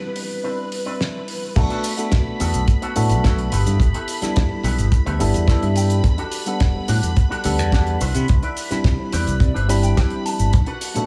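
Feel-good and groovy, this nu-disco excerpt at 107 BPM opens on a bright tine electric piano with dub echo, lush sawtooth string-machine chords with ensemble chorus and sidechain pumping, a twangy envelope-filtered guitar riff, and a damped 70s kit with a fat snare, cabasa and hi-hat, before the drop at 1.6 seconds adds a tight, dry kick and a growly fingered electric bass up front, with clean guitar fills along the way and congas arriving only at 11.0 seconds.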